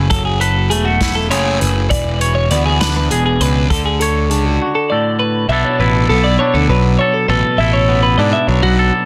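A dense, heavily limited modern master with light reverb carries this short cut from a longer math rock and midwest emo piece, intricate and playful at 67 BPM in a straight 6/8, tuned to A4 = 441 Hz. Up front, a clean, fingered, twangy electric guitar holds the accompaniment while a bright, compressed twelve-string electric guitar picks arpeggios above it, and a fuzz-soaked, overdriven picked electric bass sits just as forward underneath. A loose indie drum kit in a small room, with a tight kick, medium-tuned snare and hi-hat, plays from the start until 4.4 s, and the chords move from F#m9 through E6 and Dmaj7 to Bm11 as the second section opens at 5.5 s.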